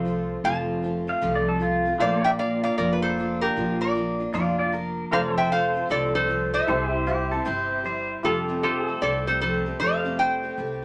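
A metallic, nasal lap resonator guitar carries the slide melody up front in this sunny, down-home honky-tonk and classic country excerpt in F major at 154 BPM with a swung 4/4 feel, while a bright, clean pedal steel adds a second line at 1.1 s and again from 4.3 to 8.2 s over a warm pedal steel's sustained, swelling chords, a full-bodied picked dreadnought acoustic guitar, a detuned, jangly vintage upright piano in the background and a woody, thumpy pizzicato upright bass, all in a wet studio ambience.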